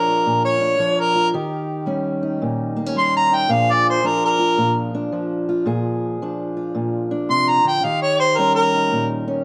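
A mellow, scooped-note harmonica leads this soulful, rollicking acoustic country blues excerpt, sounding distant and roomy yet up front as it plays a jazz-style solo across the whole passage, moving between Bb7 and Eb7 at a swung 111 BPM in Bb mixolydian. Beneath it, a fingerpicked steel-string parlour guitar with fresh strings gives a warm, boxy, up-front accompaniment. Moderate spring reverb and studio ambience surround the pair before the harmonica stops at 9.1 seconds and the guitar plays on to 9.4 seconds.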